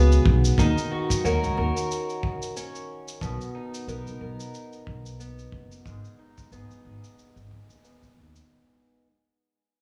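A lightly swung 4/4 groove at 91 BPM rests on a dark, saturated, tight kick drum and a muffled, pitched-down shaker, while a woody upright bass plays pizzicato up front. Over this pastoral, hopeful folktronica, a bright, shimmering twelve-string acoustic guitar picks octave-doubled arpeggios through a low-pass filter and digital delay, with a filter sweep running across the passage as the harmony moves from Db7sus4 through Ebm7 and Cbmaj7 to Abm. Studio reverb surrounds the parts, and this brief cut from a longer piece fades out over its first 8.5 seconds.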